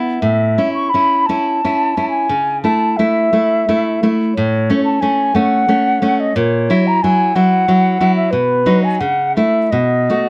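A romantic, lyrical duo excerpt for flute and classical guitar in 3/4 at about 89 BPM, played with a loose rubato feel, where an up-front, fingerpicked nylon-string guitar with fresh strings and audible finger squeak supplies the accompaniment from the start, while a mellow, pure-toned silver concert flute with vibrato and tongued notes carries the melody from 0.2 s over chords moving from A through F#m/A and F#7/A# to B7, all set in a modest small-room ambience.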